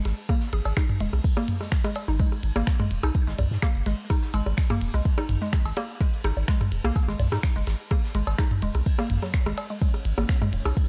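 Cool and hypnotic, this short cut of minimal techno rides an overdriven, up-front electronic kick and a deep, punchy sub bass with a pitch-drop attack, while a hollow, warbling square pluck riff bounces through chorus and delay, clicky overdriven hats, snaps and shaker sit over tape-echoed cowbell, rim clicks, toms and woodblock from a booming analog drum machine, a vintage brush kit adds dark, rolled-off ride and snare, and a bright pulsing gated texture surfaces in the background at 9.8 seconds, all in a dark, dry production.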